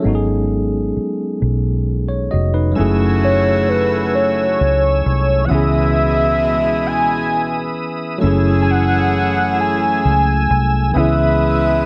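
A clean tine electric piano and a dark, round, foam-muted fingered bass open this slow, late-night R&B excerpt in 6/8 at 44 BPM, moving from G#m7 before the music settles into a yearning sway between F#m9 and C#m9. At 2.8 seconds a tonewheel organ adds sustained chords with chorus vibrato and a tight, clear horn section punctuates with jazz-style stabs, and from 3.2 seconds a velvety, full-bodied synth lead with detuned unison and vibrato carries the melody on top. Light reverb surrounds the mix, with the bass and electric piano sitting up front.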